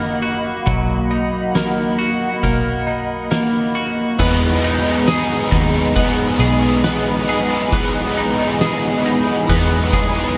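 A straight, slow 4/4 pulse at 68 BPM sets a dreamy, ethereal mood in this E lydian dream pop excerpt. A hollow, flute-like soft pad holds sustained chords with a warbling ensemble chorus, while a bright, twangy twelve-string electric guitar plays arpeggios drenched in lush chorus and delay, sitting up front in the mix. Beneath them, a vintage muted electric bass gives a dark, round, foam-muted low end, and at 0.7 seconds an oversized, low-tuned drum kit enters with a punchy kick, fat snare, dark cymbals, hi-hat, ride, crash and tambourine, all gritty and saturated in a pumping stone room. At 4.2 seconds the harmony moves from Bmaj7 to Emaj7, and a biting overdriven guitar joins with harmonic tremolo and analog chorus, its tone warm and forward. A moderate concert hall reverb gives the whole piece a spacious, floating air.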